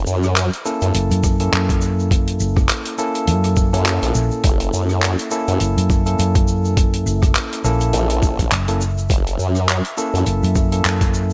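Gritty and funky, this glitch hop excerpt moves at 103 BPM in 4/4 with a swung sixteenth-note feel, sitting on a single F#7#9 chord throughout. Two up-front basses share the low end: a saturated, detuned formant-sweep wobble bass with chorus and tube saturation that drops out at 10.2 seconds, and a round, punchy hollow-body short-scale fingered electric bass. A grainy egg shaker and a dry, mid-forward soul drum kit with handclaps, hi-hat and rim click under gated reverb open the rhythm section, joined at 1.2 seconds by a thumpy, pitched-down electronic kick drum. Barky tine electric piano stabs, bright and clean through a combo amp, carry 12-bit sampler grit, sidechain pumping and digital delay. From 5.2 seconds a deep, moody ambient pad drifts in very quietly underneath, while the whole mix has a bright 1980s-style digital sheen and a light small-room reverb.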